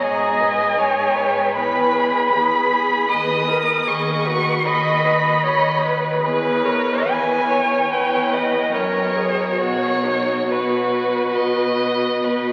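An up-front first violin sings a tender, lyrical melody with expressive vibrato and portamento over a focused second violin line, a distant, soft-attacked viola accompaniment that also slides between notes, and a distant cello bass, in this rich, slow romantic string quartet movement in B major at 68-79 BPM with rubato, cut from a longer piece and heard through wet cathedral reverb and the crackle of a very old 78 rpm record.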